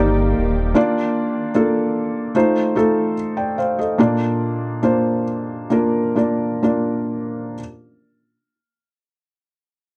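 Tender and emotional, this short pop excerpt in Bb major moves at a slow 62-76 BPM in 4/4 and starts slowing down at 0.8 seconds, passing through Ebmaj7, Bb, F7 and back to Bb. A shimmering, ethereal pad with chorus and reverb sits in the background, and a deep, full sub bass sits up front; both are heard only until 0.7 seconds. A soft, felt-muted upright piano plays from the start and carries the rest alone after that, intimate and vintage, with audible action noise, in a dry, close 1970s-style studio sound.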